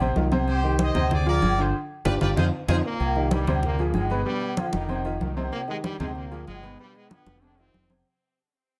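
Driving, straight 4/4 salsa at 190 BPM in C minor rides on hard-handed, dry congas and ringing metal-shell agogo bells and timbales set back in a large room. A dark, round, punchy fingered electric bass sits up front, and a worn concert grand piano with deep bass and long sustain accompanies over a Cm, Dm7b5, G7 cycle. A distant, roomy trumpet section with light vibrato carries the fiery melody from 0.5 s into a drum fill and band accent, then a brilliant jazz-style trombone section with tape echo takes over from 2.7 s before the music, cut from a longer piece, fades out from 3.0 s under light reverb.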